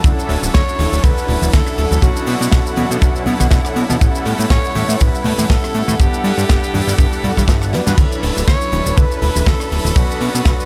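Nu-disco with a groovy, sensual feel, moving in four with a light swing on the sixteenths over a lush progression of ninth and seventh chords, cut from a longer piece. A punchy, up-front acoustic kick and a fat, saturated analog bass anchor the groove, while a polished studio kit adds bright cymbals, hi-hat, rim clicks, shaker and a medium-tuned snare, with a drum fill at 7.7 seconds. Bright, dry cabasa and congas sit in the background, and mellow synth brass, round and dark with chorus, slapback echo and sidechain pumping, fills out the accompaniment. Beneath it, a muted, veiled string section plays sustained chords con sordino, also pumping with sidechain. From 0.5 seconds a close-miked tenor saxophone takes the lead with a raspy, growling jazz tone and vibrato, trailed by tape echo, all set in a studio ambience.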